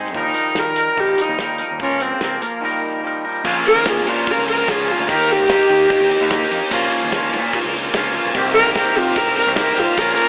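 A twangy, clean electric guitar riff with spring reverb opens this bittersweet, restless indie rock excerpt at 147 BPM in Bb dorian, alongside a growling, overdriven fingered bass and a loose, small-room drum kit with a tight kick and rolled-off top. An intimate, up-front viola enters at 0.2 seconds, bowed sul tasto with light vibrato, slapback echo and plate reverb, and it takes a solo from 3.5 seconds. A grainy, very quiet tube shaker appears just before that point, and at 3.5 seconds a biting overdriven guitar with lush chorus joins from the background, all heard through a telephone-like sound.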